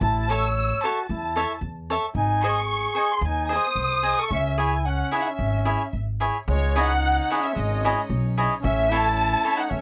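A bowed violin section carries the melody up front, close and expressive with vibrato, in this romantic, festive mariachi piece cut from a longer work with a light swing in four. A mellow trumpet plays a second line in classical style, while a bright, crisp picked cavaquinho provides accompaniment and a woody, dark pizzicato upright bass with tube saturation holds the low end. From 6.5 seconds a second violin section enters in the background with pure, floating sul tasto chords, all captured in a dry, gritty hardware recording with light reverb.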